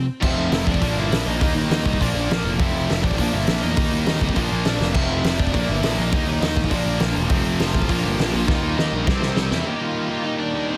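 A straight, driving 4/4 pulse at 204 BPM propels this energetic, rebellious punk rock excerpt, tuned slightly flat to A4 = 438 Hz. The loose indie drum kit sits up front with a fat snare, punchy kick and dark, rolled-off cymbals, sounding saturated and gritty in a studio room, and it breaks into fills at 4.8 seconds and again from 8.5 to 9.7 seconds. A fuzz-soaked, overdriven picked bass anchors the low end while three bright rhythm guitars, one crunchy and overdriven, one tight and distorted, and one heavy, high-gain and double-tracked, churn riffs in the background over a cycling F, Bb and Eb progression that turns to C before landing on Eb in the closing section. Above them a high-gain lead guitar with distortion and digital delay carries the melody from the very start, its tone rounded rather than biting. The mix is dry and dense, pushed hard by a heavily limited modern master.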